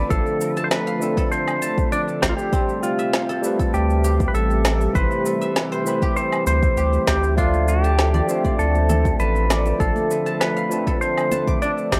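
A twangy, up-front clean lap steel guitar carries the melody through dub echo in this meditative, hypnotic organic downtempo excerpt, played with slide and volume swells over a gritty overdriven tine electric piano with analog delay, silvery fingerpicked guzheng arpeggios through tape echo, a nostalgic, warbling pad in the background, and a round, deep sub bass that pumps alongside the piano and pad, while a layered electronic kick and woody electronic cabasa, snare and woodblock drive the groove from 0.1 s, a ringing bronze singing bowl enters at 7.4 s and close, dry congas and bongos join at 7.5 s, all set in an echo-heavy mix with moderate plate reverb.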